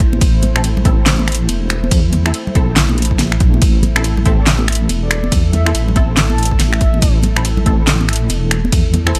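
Brooding and heavy, this deep dubstep fragment moves with a swung, half-time feel. A deep, detuned wobble bass sits up front over a punchy, overdriven electronic kick and a deep house kit of finger snaps, handclaps, metallic hats, ride cymbal and a fat snare, while close, dry congas and a moody analog pad with chorus and phaser hover in the background. Muted filtered chord stabs with dub echo enter at 0.6 s, and a breathy flute-like synth lead with vibrato drifts in from 4.4 s to 7.2 s, all washed in digital ambience.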